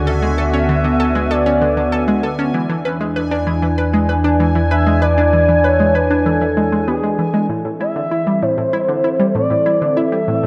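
Expansive and mysterious, this ambient, sequencer-driven space music moves at 97 BPM in a straight 4/4, drifting from Dmaj7 to E7 before settling on Am at 7.5 s. A sweeping resonant pad of detuned sawtooth sustains chords up front, its slow attack and filter swell giving an evolving shimmer through chorus. Beneath it, a round analog bass of deep, wave-folded tone holds the low end until it stops at 7.5 s, while an analog pluck with a fast attack, short decay and ring-modulated bite plays a bright riff through chorus and analog delay. An expressive portamento lead carries the melody with a soft attack, mellow vibrato and gliding pitch, also treated with chorus and analog delay. In the background, a bubbling texture of random filter steps and long release glitters high above, and the whole echo-heavy mix sits in a wet spring reverb in this brief cut from a longer piece.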